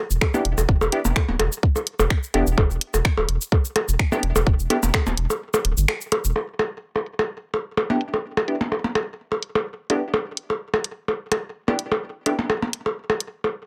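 A round, deep analog bass with sidechain pumping opens this quirky, cool minimal techno excerpt in E minor at 127 BPM, alongside a swung garage kit of low-passed cabasa, finger snaps and hi-hat, overdriven percussion blips, and a tight, up-front electronic kick. Crisp, detuned wavetable chord stabs with a wave-folded, plucky decay, tape colour and digital delay sketch an E7 chord with its third omitted before the kick stops at 5.0 seconds. By 6.4 seconds the bass has gone and the harmony turns to Em7, leaving the kit and blips in light reverb until the mellow stabs return at 7.9 seconds.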